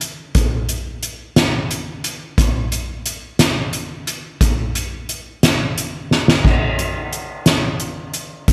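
Brooding and cathartic, this short rock fragment is cut from a longer piece and rests entirely on a solo drum kit played with soft mallets. The kit moves in 6/8 with a straight feel, using crash cymbal, hi-hat, kick drum and snare drum. Mallets soften the attack on both drums and cymbals, while the snare sounds fat and the kick booms, placed up front in a big acoustic room. Light reverb adds space around the kit. A drum fill at 6.1 seconds leads into a new section at 6.4 seconds, which carries through to the close at 8.5 seconds.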